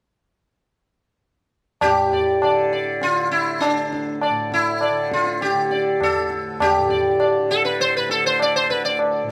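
At 1.8 seconds, sitar, tanpura and tabla enter together in this short, introspective fragment of Hindustani classical music, set in raga bhimpalasi on D at a straight, unhurried 100 BPM in 4/4. The plectrum-plucked sitar carries the melody between D4 and D5, sitting up front with a warm, buzzing voice, shimmering sympathetic strings and a slapback echo. Beneath it, the softly plucked tanpura holds a bright, shimmering drone from D2 to D3, lending a meditative stillness. The low-tuned tabla adds a ringing, vintage colour, its band-limited tone heard at a modest level. Tuned to A4 = 439 Hz and captured outdoors with a dry sound, the passage closes as the sitar stops at 9.0 seconds and the tanpura ends at 9.3 seconds.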